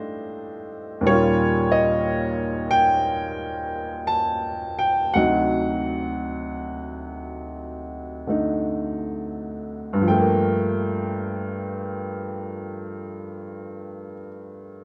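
A lightly reverberant room sound frames this short, live-feeling fragment of solo jazz, with the piano placed up front. The upright piano carries everything alone, its tone woody and natural, with a long sustain letting chords ring into the space. The mood is cool and swinging, in 4/4 with a relaxed swung eighth-note feel. From 1.0 seconds the pulse gradually slows, easing through dark, extended harmonies such as Eb9 and D7b9. At 10.0 seconds the piece moves into a new section that settles on a lush Gm9 before the fragment ends at 14.8 seconds.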